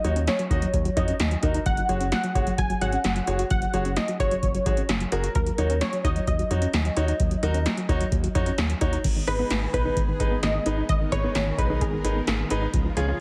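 A cool, nocturnal synth-pop excerpt cut from a longer piece moves in a straight 4/4, circling through minor-seventh and suspended chords before settling on a minor chord near the end. A punchy, nasal polysynth carries the melody with a funky, detuned edge, treated with chorus and tape echo, while a clear grand piano supplies accompaniment beneath it. A soft, mellow pluck traces arpeggios in the background, also colored by chorus and tape echo, and a round analog bass with a dark, ring-modulated tone anchors the low end. An electro analog drum machine sits up front with a deep kick, a punchy snare, metallic hats and crash cymbal, sounding as if re-recorded in a small room. At 9.0 seconds a lush, vintage string machine enters with sustained ensemble chords behind the mix, and the whole is wrapped in light digital ambience and a heavily compressed, radio-like sound.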